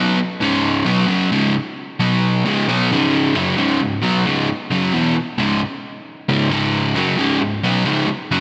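Menacing and heavy, this short rock passage at 133 BPM in C# minor features a solo crunchy, overdriven electric guitar, picked, double-tracked and up front in the low register, moving through C#5, B5 and back to C#5 chords before the music shifts at 2.9 seconds, all bathed in a lush hall reverb with bright 1980s-style digital production.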